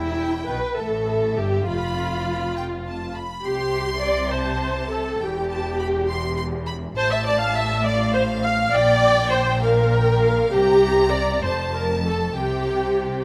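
The viola section sits up front in this cheerful, spirited classical-period movement for string orchestra, its warm, vibrato-laden bowed accompaniment carrying the most weight from 0.0 to 13.2 s. Above it, a focused violin section sings the melody between E5 and C6, while a second violin section traces an expressive second line from the background. Cellos and double basses share the bass with a lush, rich bowed tone, anchoring the straight 6/8 lilt at 68 dotted-quarter beats per minute. The harmony opens on E minor colours, settles into F major from 7.0 s, and ends on F and C chords. A moderate scoring-stage reverb of 1.9 s surrounds the detailed, close-miked strings in this passage cut from a longer piece.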